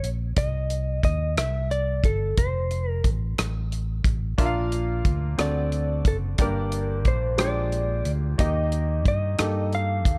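A straight 6/8 sway carries this slow, uplifting gospel piece, with a small-room soul drum kit of tight kick, hi-hat and rim click, its top end rolled off, sitting up front beside a growly, amped fingered electric bass. Above them a dark, compressed lap steel guitar, played with slide and fingerpicks, sings the soulful melody through chords such as Cm, Bb13 and Eb. At 4.4 seconds a clear baby grand piano with short sustain joins as accompaniment, all in a dry, close mix cut from a longer performance.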